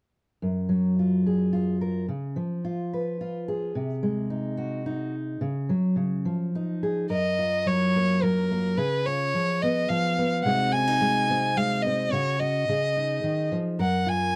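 An unhurried three-beat pulse with a straight feel carries this intimate, nostalgic acoustic folk-pop ballad, cut from a longer piece. A fingerpicked steel-string acoustic guitar opens at 0.4 seconds, its dark auditorium-body tone sitting up front as it moves through major-seventh, dominant-seventh and suspended chords. At 7.1 seconds a single bowed violin enters with the melody, smooth and even, its rich voice shaded by vibrato and placed close alongside the guitar. The two parts carry on together until 14.4 seconds, returning to the opening chord. A light touch of reverb softens an otherwise dry, close-miked sound that recalls a 1970s studio.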